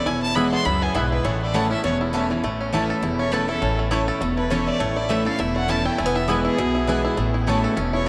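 Bluegrass in A major at a quick 202 BPM with a swung feel, this joyful, virtuosic excerpt sets a clear, nasal fiddle melody with light vibrato over a bright, full-bodied picked acoustic guitar up front, twangy fingerpicked banjo arpeggios, a thumpy, woody upright bass entering at 0.1 seconds, and mandolin stabs in the background arriving at 0.4 seconds, all washed in a huge reverb that suggests a vast, echoing space.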